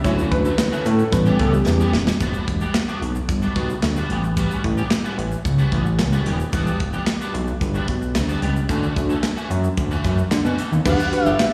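A straight 4/4 groove at 111 BPM drives this funky, late-night early-eighties boogie funk cut in E dorian, built on a tight, dry funk kit with handclaps, crash and slapback echo, a fat, saturated sawtooth bass sitting up front, a slightly broken-up, twangy guitar riff running throughout, and a grainy egg shaker tucked in the background. A worn, slightly out-of-tune tine electric piano takes a short solo over a lush, very quiet string machine until a drum fill at 1.7 seconds ushers in the main groove, with chords moving from Dmaj9 and A9 into Em9, A13 and back. Both return at 10.9 seconds alongside a smooth, dark synth lead with vibrato and plate reverb, all heard through a live venue's PA with light hall ambience.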